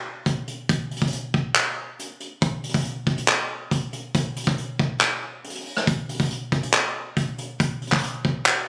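Captured on a phone in a studio room with light reverb, this short cut from a longer hip hop piece is a hard-hitting yet melancholic half-time groove at 139 BPM in 4/4, carried from 0.3 to 8.6 seconds by a vintage acoustic brush drum kit sitting mid-forward and up front, its punchy kick, hi-hat, rim click and handclaps taking on a warm, rolled-off top.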